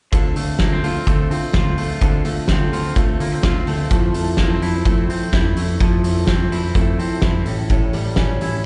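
A loose indie drum kit, with a fat snare and tight kick set up front, drives a straight 4/4 at 127 BPM in this short cut from a longer jangly indie pop piece in D minor, bittersweet and wistful as it moves from Dm7 to Fmaj7 at 3.9 seconds and A7 at 7.5 seconds. A dark, foam-muted electric bass holds the low end, a full-bodied fingerpicked jumbo acoustic guitar with slapback echo sits in the background, and an electric guitar through a small old amp plays twangy, slightly broken-up lo-fi arpeggios with warbly pitch drift, tape echo and slapback. The whole track sounds like a live gig heard through the venue's PA, with a recital-hall reverb and a dulled top end.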